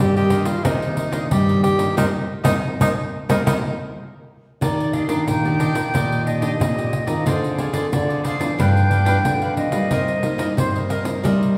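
A breathy, whispered tenor saxophone opens this joyful samba and choro excerpt, close-miked and intimate with a gentle vibrato and soft attack, carrying a jazz-style solo line before falling silent at 3.5 seconds. Beneath it, two fingerpicked nylon-string guitars hold down the groove at 91 BPM in a straight 4/4: one deep and classical on the bass, with audible finger squeak, the other bright with fresh strings, sitting in the background as accompaniment. A crisp, picked cavaquinho and a jingly pandeiro, dry and up front, join almost at once, and the band adds an accent between 2.0 and 4.6 seconds. At 4.6 seconds the music shifts from C minor to E-flat major as a silver concert flute takes over the melody with an airy, straight tone and clean attack, sounding distant against the rhythm section. The harmony moves from Ebmaj7 through Dm7b5 and G7 back to Cm7, all bathed in the lush reverb of a recital hall.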